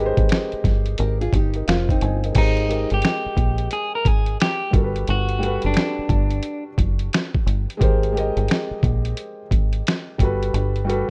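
Lo-fi hip hop at 88 BPM with a swung 4/4 feel, this mellow, dreamy excerpt drifts between Abmaj9 and Gmaj9 over a felt-muted upright piano with a soft, vintage cassette-tape tint, a dark, round dub bass and a compressed, pitched-down sampler-style drum kit whose thumpy kick, snare, hi-hat, finger snaps and crash are overdriven and up front. A small fingerpicked nylon-string guitar with analog delay adds a brief second line from 1.0 to 2.3 seconds. An up-front, slightly broken-up electric guitar then carries the picked melody until 6.6 seconds, all in a rough home-demo mix with digital ambience and a muffled top end.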